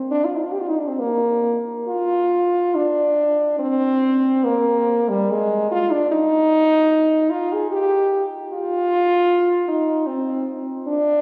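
Yearning and lonely, this short classical passage, cut from a longer piece, gives an unaccompanied French horn a mellow, smooth-topped voice placed up front, playing freely in a rubato 3/4 at roughly 67-78 BPM in F dorian from 0.1 to 11.2 seconds, captured on a phone in the room and bathed in a wet church reverb with a 3.1-second decay.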